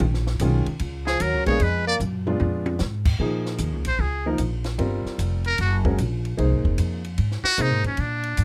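Recorded dry and close, with detailed microphones, this short cut from a longer piece of small-group swing and bop feels moody and swinging in 4/4. Up front, a woody, thumpy pizzicato upright bass on steel strings sits alongside a compact cocktail drum kit with dark cymbals, a high-tuned snare and a tight kick, both playing throughout. A smooth, vintage grand piano with short sustain supplies the accompaniment, while a buzzy, thin trumpet with a metal mute carries the melody from 1.1 seconds. A soft, veiled trombone in a cup mute adds a brief second line until 2.0 seconds, when the drums launch into a fill. From 3.2 seconds the brilliant, breathy muted trumpet takes a solo over chords that move from Bbm7 through Fsus24 and Gb to Fm7.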